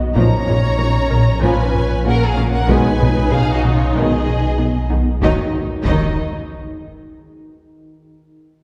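Heard from further back in a wet concert hall, this brief excerpt from a hybrid orchestral and electronic film score feels relentless and brooding in a straight 4/4. A deep, moody ambient pad with slow attack and chorus, a very quiet analog pluck playing arpeggios, and a rubbery, hollow square-wave bass riff all start at once, grounded by a round sine sub bass and a warm viola section murmuring in the background. Just after, at 0.2 seconds, dark violins carry a smooth, lush melody over a more distant, expressive second violin line, while vibrato cellos and soft-attack double basses add a very quiet bowed foundation. Very quiet horns and tight trombones hold sustained chords through the shift from Bbm to Abm/Cb, and a taiko ensemble struck with hard sticks plays in the background. The brass stop at 5.5 seconds after the harmony settles on Ebm, the strings and sub bass end at 6.2 seconds, and the taiko drums carry on alone until 7.1 seconds.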